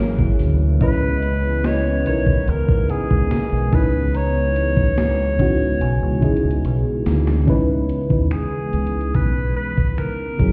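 A slow, straight 72 BPM groove in 4/4 enters at 0.2 seconds from a gated 80s digital drum machine with finger snaps, hi-hat, a thumpy kick and an overdriven gated-reverb snare, together with a deep, round, up-front fingered electric bass, with a drum fill between 6.6 and 7.5 seconds. Over it, a breathy, subtoned alto saxophone carries a longing melody with scooped notes and delay, while a soft FM electric piano with chorus and a smooth, detuned analog pad with sidechain pumping hold down the F#7 and C#m7 harmony in C# dorian. A delicate, bell-like celesta glimmers in the background until 7.8 seconds, and the whole moody contemporary R&B excerpt sounds muffled, as if heard through a wall in a stone room.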